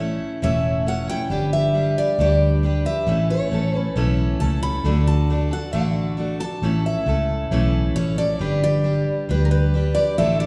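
Heartfelt and sunny, this honky-tonk and classic country clip moves in a straight 4/4 feel, cut from a longer piece and running about 10.5 seconds. Two picked steel-string acoustic guitars play throughout, one carrying the melody high in its range with the sparkle of fresh strings, the other picking accompaniment up front with the full-bodied ring of a dreadnought. Beneath them, a vintage muted fingered electric bass sits low and up front, its foam-muted tone dark, round and punchy through an amp. The chords circle through A, G and D, landing on D at 4.9 seconds before returning home. The whole is bathed in a lush reverb of a church or concert hall that lends the bright guitars a spacious glow.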